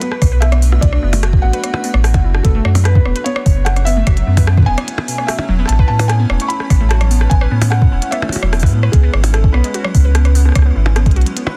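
Cerebral and intricate, this short IDM excerpt sets a soft, felt-muted upright piano melody with dub echo over an icy, crystalline glass pad that sustains chords in the background, while a warbling, lo-fi pluck spins arpeggios through chorus, phaser and tape echo. Underneath, a glitchy drum kit of clicky hats, percussion blips and rim clicks, with soft clipping on the snare, sits beside a round, up-front sine sub bass and a soft electronic kick, both entering at 0.2 seconds. The chords move from Bm7 through F#m7 and Amaj7 to C#m7 before a break at 11.4 seconds, all within a dense, heavily limited master.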